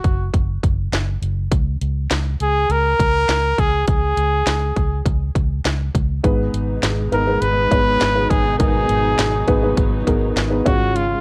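A straight 4/4 pulse at 102 BPM from a punchy, up-front house drum kit with cracking snare and hi-hat drives this uplifting, anthemic piano-driven pop excerpt, where a clear, close-miked trumpet carries the melody with light vibrato over a round, foam-muted electric bass throughout, while a dark, woody upright piano with audible action noise and a distant bowed string section with soft attack and portamento join at 6.2 seconds, all under light studio reverb and the warble of worn cassette tape.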